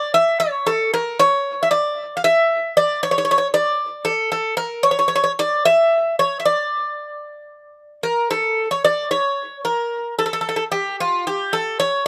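A lone acoustic Greek bouzouki, picked on metallic double strings with some octave-doubled courses and sitting up front in a dry outdoor sound, plays this cool, bittersweet Greek folk fragment in a straight 7/8, moving into a new section at 8.3 seconds before the clip ends at 12.1 seconds.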